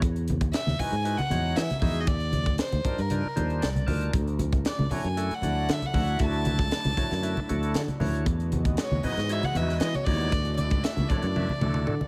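Electric jazz fusion at 116 BPM in a straight 4/4, this slick, soaring passage in D lydian is cut from a longer piece and moves through lush major-ninth chords, from Emaj9 to Ebmaj9 and settling on Dmaj9. A growly, up-front fretless electric bass sustains underneath, while a tight funk drum kit with a high-tuned snare and tight kick sits mid-forward, joined by thin-skinned, low-tuned congas tucked in the background. A single violin carries the melody with a soft attack and an airy, floating sul tasto tone, pure and rich. A reedy, clean tonewheel organ through a slow rotary speaker supplies accompaniment and adds a fill at 3.4 seconds, just before a thick, detuned unison pad with chorus and a slow attack enters at 4.1 seconds to spread sustained chords behind everything. A drum fill at 11.4 seconds closes the passage, all set in a small room.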